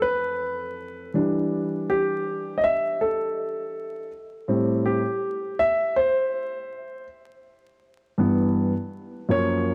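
A dark, mellow grand piano plays alone across this short 9.7-second cut from a longer hip hop piece, sitting up front with a smooth, vintage tone and short sustain as it moves through Fmaj7, Em7, Am7 and G6 in A minor. At 81 BPM with a swung sixteenth-note feel, the nocturnal, smoky mood is deepened by a moderate plate reverb, a dark, warm production and a layer of vinyl crackle.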